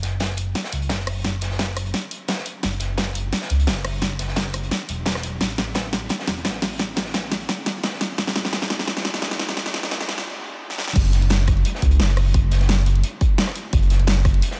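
Liquid drum and bass at 173 BPM in F# minor, lush and melancholic, this excerpt from a longer piece builds through a long filter sweep and drum fill before a stop at 10.3 seconds and a drop at 11.0 seconds. A smooth, sustained synth bass with a sawtooth and square-wave edge and a ring-modulated tone sits up front alongside a pop kit with a fat snare, crash, hi-hat and rim click. A punchy, layered electronic kick and a gritty, saturated breakbeat kit with a dark, rolled-off top sit further back in a light reverb and small room ambience.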